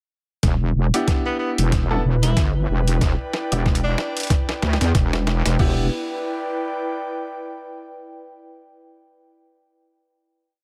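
A gritty, funky glitch hop piece opens at 0.4 seconds with the rhythm section and pad arriving together: a heavy, up-front wobble bass with square and sine tones, unison detuning and tube-saturated chorus, an electronic kick that is thumpy and pitched down, and a sampler-style drum kit of closed hats, a medium-tuned snare and crash, all tape-colored and compressed in a swung beat with edits. Alongside them an airy, breathy pad of detuned triangle and sawtooth layers with a noise edge slowly shifts chords, pumping against the sidechain. At 0.9 seconds a bright grand piano with long sustain adds sparse, echoing close-voiced chord stabs through digital delay, and at 1.3 seconds a clear tenor saxophone with light vibrato enters with short jazz-style solo phrases roughened by vintage 12-bit grit. The whole piece is one build carried by a drum fill, the bass phrases shifting their wobble speed as it goes. 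Once the groove drops away, the pad holds a final chord alone until just past 8 seconds, in a dry, close sound.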